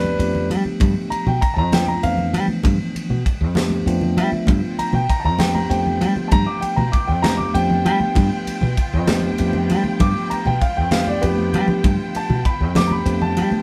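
A dark, mellow baby grand piano leads this funky, soaring electric jazz fusion excerpt, soloing up front in G mixolydian over a G9 chord. Bright, bell-like tine electric piano accompanies alongside a warm, direct fingered electric bass up front, while damped, high-tuned congas sit in the background and a crisp, polished drum kit with a punchy kick, high-tuned snare and ride cymbal sets a slow 65 BPM pulse in a straight 6/8. The clean electric piano slips in a short fill at 3.6 seconds. At 4.5 seconds a muted, con sordino string section enters far back in the mix with soft-attack, bowed chords that are veiled and lush with vibrato. The airy kit adds a fill at 11.2 seconds, and the whole band sounds like it is playing live together in one room with moderate studio reverb.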